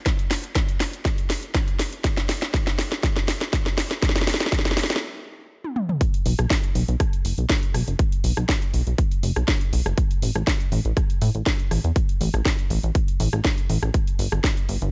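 A straight, driving pulse powers this bittersweet progressive house cut from a longer piece, with a punchy, tape-warm electronic kick and an overdriven house kit of bright hats, rim clicks, a cracking snare and toms, the hats and toms pumping. Drum fills shape a build-up that stops between 5.0 and 6.0 seconds before the drop lands at 6.0 seconds. A plucky, funky analog bass follows at 6.3 seconds, its wave-folded sawtooth, square and sine tones mellow and decaying under sidechain pumping, all set in a digital ambience.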